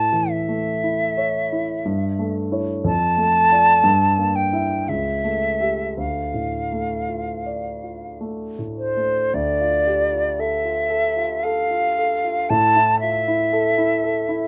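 A silver concert flute sings an airy, brilliant melody with expressive vibrato and soft attacks over a warm grand piano accompaniment with deep bass, both up front and heard together from the start of this romantic classical duo in D minor. At a slow, rubato 53-61 BPM in 3/4, the music feels melancholic and yearning, moving from A and A7 through a diminished chord before settling on D minor at 6.0 seconds. A light reverb surrounds the pair as the opening phrase returns at 9.3 seconds, and the passage, cut from a longer piece, breaks off on an open A chord.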